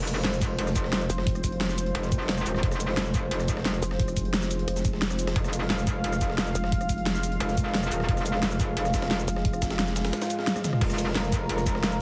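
A dark, moody pad of detuned sawtooth chords and an up-front, distorted metallic wobble bass open this mechanical, aggressive excerpt of dark technical drum and bass in F minor at 176 BPM, pumping against a knocking electronic kick, a layered dubstep kit with a huge snare and metallic hats, and a very quiet, gritty breakbeat sampler kit, while a nasal, resonant vowel-sweep wobble bass joins at 1.1 seconds and a faint electronic noise sweep enters at 10.0 seconds, carrying into a drum fill near 10.5 seconds, all set in light reverb with a heavily compressed radio sound.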